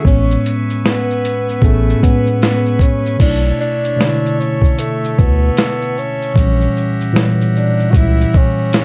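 A breathy, subtoned tenor saxophone carries a scooped, vibrato-laced jazz melody over a worn, slightly out-of-tune tine electric piano, a faint chiffy trumpet-stop pipe organ holding bright baroque-voiced chords, a thick saturated sine sub bass that drops out at 8.3 seconds, and a muffled, thumpy, compressed sampler-style kit of kick, snare, hi-hat, shaker and crash, in a nostalgic, cosy lo-fi hip hop excerpt at 76 BPM with a swung sixteenth feel, moving from Amaj9 through Bm11 to F#7b9/A# in a moderately reverberant studio space with a cassette-tape haze.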